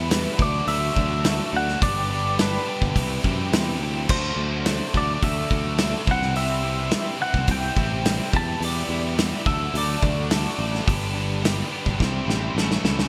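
A twangy, compressed clean electric guitar carries the melody through chorus and delay in this carefree, upbeat indie rock excerpt at 106 BPM in D mixolydian, falling away at 12.5 seconds. Beneath it, a biting overdriven guitar and a bright, background overdriven guitar with lush chorus play riffs, while a very quiet, reedy combo organ with heavy vibrato holds chords over a round picked bass, moving through Dadd9, G, C and Em. The loose, up-front drum kit has a punchy kick, dark cymbals and gated reverb, and it closes with a fill from 12.0 seconds, all in a light room ambience with bright 1980s-style digital production.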